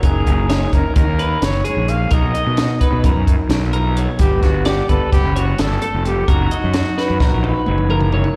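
Math rock and midwest emo in an intricate, wistful 9/8, heard as a short live cut through a venue's PA with small-room ambience and recital-hall reverb, moving through F#6, Bmaj7, Gmaj7 and D#m/F#. A breathy, whispered trumpet carries the intimate, softly attacked melody with light vibrato and slapback echo. Beneath it, a clean, compressed twelve-string electric guitar picks bright, twangy arpeggios; a slightly broken-up, lo-fi electric guitar through a small old amp sits in the background; a growly, fuzz-overdriven fingered bass sits up front; and a dry cocktail kit with a high-tuned snare and punchy kick closes on a drum fill from 7.0 seconds.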